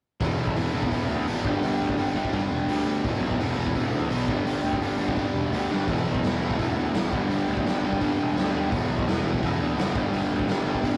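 A growly, fuzz-drenched picked bass sits up front with a raw garage drum kit, its punchy kick and gritty, rolled-off snare driving a rowdy, upbeat punk rock riff that alternates between E and G, while an overdriven semi-hollow guitar adds hollow-body bite and a bright distorted guitar riffs in the background, all in a rough rehearsal-room sound with light reverb and a drum fill at 5.7 seconds in this short cut from a longer piece.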